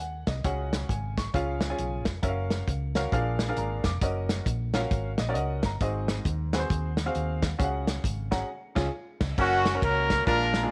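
Uptempo gospel in F# major at 134 BPM with a swung 4/4 feel, this short, jubilant excerpt opens with a clear, short-sustain baby grand piano comping up front over a dark, round hollow-body electric bass and a tight soul drum kit with dark cymbals, all in a small, lightly reverberant room. The piano takes a fill at 4.9 seconds, and the band hits an accent at 8.5 seconds on the way back to the home chord. At 9.4 seconds a tight, mellow horn section with light vibrato and a smooth top enters with the melody, riding loudest in the mix.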